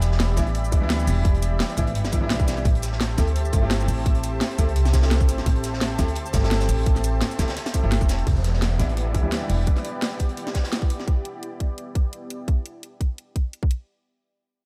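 Set in a lightly reverberant studio space, this dreamy, melancholic liquid drum and bass fragment moves at 171 BPM in E minor, with a 54% swing on the sixteenths and tuning pitched slightly high at A4 = 445 Hz. A tight, overdriven electronic kick sits up front from 0.4 seconds over a layered kit, already playing from the opening, with a cracking snare, bright hats, cabasa and its own overdrive. Behind it, a gritty, saturated breakbeat kit with a high-tuned snare and rolled-off top stays in the background. A woody, thumpy pizzicato upright bass with steel strings carries the low end up front, while a clear, natural grand piano plays accompaniment through a low-pass filter and delay. A thick sawtooth-and-square unison pad, detuned with a sub octave, holds slow-attack chords, shimmering with chorus and phaser and pumping against the sidechain over Em7 and Am7. At 8.3 seconds the harmony returns to Em7 as a very quiet downlifter sounds and a filter sweep passes over the piano, which stops at 9.9 seconds.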